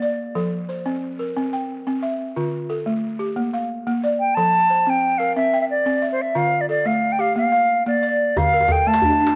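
Flowing and warm, this West African traditional piece in 12/8 opens with woody, dry, buzzing balafon arpeggios played with soft rubber mallets over a repeating F, C, Dm, Bb progression, joined at 4.2 seconds by a pure, tongued wooden flute melody with vibrato and tape echo, before a medium-tuned djembe with metal rattles and a vintage, band-limited tone enters at 8.4 seconds, the whole passage sitting in light studio reverb.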